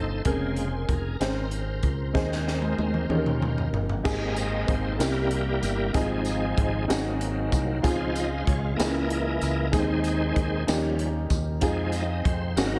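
In a straight 6/8, this slow, hopeful gospel passage is led by a shouting, lightly overdriven tonewheel organ through a fast rotary speaker with chorus vibrato, over a woody, slightly detuned upright piano, a growly fingered electric bass up front and a crisp fusion drum kit with bright cymbals and a punchy kick that plays a fill from 2.2 to 4.1 seconds, before a jingly tambourine joins in the background at 4.1 seconds, the whole mix soaked in a dreamy plate reverb.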